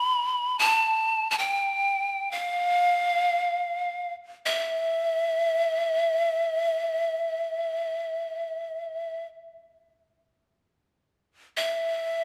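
In free time, this mournful, solemn Caucasian folk lament, cut from a longer piece and tuned to A4 = 441 Hz, features a solo bamboo pan flute, close-miked and up front, playing within a range of E5 to B5 for 12.2 seconds with a breathy, unsteady tone, tongued chiff and vibrato, set in a moderate scoring-stage reverb with an RT60 of 1.8 s.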